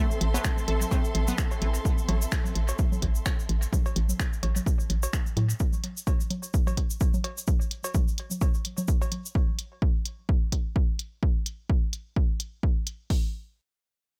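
A hollow, knocking FM bass sits up front in this cool, sparse minimal techno excerpt, bouncy and dark with a fast attack, pumping against the sidechain over a lone A minor chord. Beside it, a punchy analog drum machine delivers a dry kick and hi-hat, while a minimal click drum kit adds clicky hats and finger snaps that carry analog delay and a small-room character. A resonant blip pluck, juicy and squelchy with nasal, detuned square and sawtooth tones, chorus, tape echo and 12-bit sampler grit, flashes its riff only until 1.7 seconds. Close, bowed studio strings with vibrato and portamento lay a shadowy, expressive texture that fades out by 5.6 seconds. Grainy acoustic cabasa and electronic cowbell and congas, the latter touched by analog delay, fill in the percussion until about 9.3 seconds, leaving the two drum parts to finish in an echo-heavy mix with little reverb.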